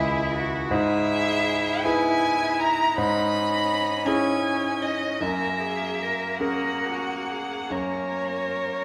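In a 6/8 with rubato, dotted quarters falling around 45-56 BPM, this brief excerpt from a slow romantic movement for piano quartet unfolds in a serene, tender mood. A single violin carries the melody up front, its tone rich and expressive with vibrato and portamento, though it sounds somewhat distant. Beneath it, a cello and a second violin hold smooth, even inner lines with vibrato, the second violin set further back in the background. The concert grand piano supplies the accompaniment with a bright, brilliant, polished sound, present and forward with deep bass. The harmony moves from C#m through E/G# and C#m7/G# to F#9, settling on F# at 7.7 seconds, all wrapped in the glow of a stone room with a 1.3-second decay.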